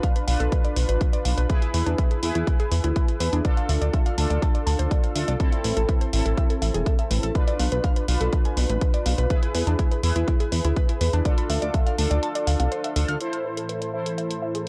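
A dry, gritty recording with transformer saturation and a digital ambience frames this hypnotic, dramatic slice of melodic techno in A harmonic minor at 123 BPM, where a woody, dark wave-folded pluck spins arpeggios beside bold, warbling analog synth brass stabs, both carrying chorus, analog delay and sidechain pumping. Underneath, a punchy, tape-warm electronic kick sits up front with a layered electronic hi-hat, while a funky, mellow analog bass, also up front and pumping, rides a Bdim, E, Dm, Am progression. The kick stops at 11.8 seconds, and at 13.2 seconds an airy, detuned resonant pad swells in on sustained chords as a filter sweep moves over the pluck.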